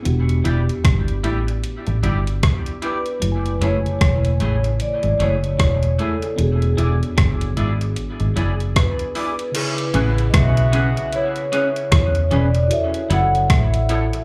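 Smooth and tender, this lovers rock reggae passage at 76 BPM in A major rides a swung 4/4 groove built on a thumpy, tape-warm gated 80s drum machine and a dark, round, foam-muted fingered bass up front, while a mellow tine electric piano with chorus and echo, a twangy clean electric guitar riff set in the background, and slightly broken-up guitar stabs through a small old amp fill the middle; a ringing, airy vibraphone with soft mallets carries the melody from 2.8 s, a clear vintage horn section adds a second line from 9.5 to 11.8 s, and the whole performance is heard as a live gig through a club PA.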